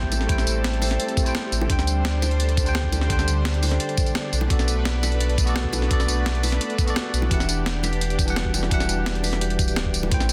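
Melancholic and soulful, this is a cut from a longer piece of liquid drum and bass moving at 171 BPM in a straight 4/4, drifting through Am7, D7sus4, Bm7 and Em9. A barky, bell-like tine electric piano carries the accompaniment with a touch of delay, while a lush, warbling unison pad of detuned sawtooth voices holds sustained chords, its chorus shimmering and its level pumping against the sidechain. Above them, a vibraphone played with medium hard mallets spins ringing, metallic arpeggios through a digital delay, its fast motor vibrato adding sparkle. Underneath, a deep, full sub bass with an octave layer sits up front, thickened by tube saturation. The drums pair a thumpy, gritty electronic kick with a compressed, tape-warm breakbeat kit of hi-hat, medium-tuned snare and tambourine, both re-recorded in a small room, while round, low-tuned bongos sit very quiet in the background. Light reverb and digital ambience frame a dense, heavily limited modern master.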